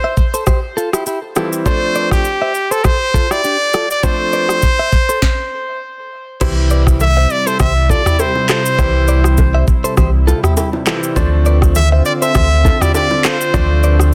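A brilliant, punchy trumpet carries the melody up front in this romantic, joyful afrobeats excerpt, joined by a clean picked electric guitar riff with tape echo, a knocking electronic drum kit with a clipped snare and handclaps, and a bright grand piano, before a break at 5.2 seconds gives way at 6.4 seconds to a deep sine sub bass and background congas and bongos, with a lush detuned pad arriving at 7.1 seconds, all in a dense, heavily limited, dry mix.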